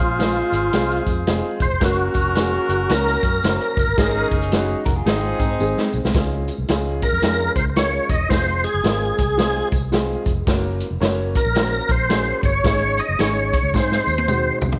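Uptempo 1960s-style soul in Db major at 111 BPM, swung in 4/4, with a warm, uplifting mood in this cut from a longer piece. A full, lightly overdriven tonewheel organ sits up front and carries the melody, its chorus vibrato, slow rotary speaker and slapback echo giving it a rich, spinning character, and it takes a solo over the opening 6.1 seconds. A clear, tight horn section plays a second line beneath it until 5.9 seconds, while a very quiet, slightly broken-up electric guitar adds a brief picked riff around 4.9 seconds. Underneath, a foam-muted, round electric bass and a dark, woody, slightly detuned upright piano fill out the harmony, moving through Fm, Gb, Absus4 and Ab to Db before cycling through the progression again. A vintage drum kit with a punchy kick, medium-tuned snare and rolled-off top drives the groove, with fills closing each section, and a jingly tambourine sits close and dry in the background. 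Light reverb and small room ambience frame the whole band with an intimate, natural sound.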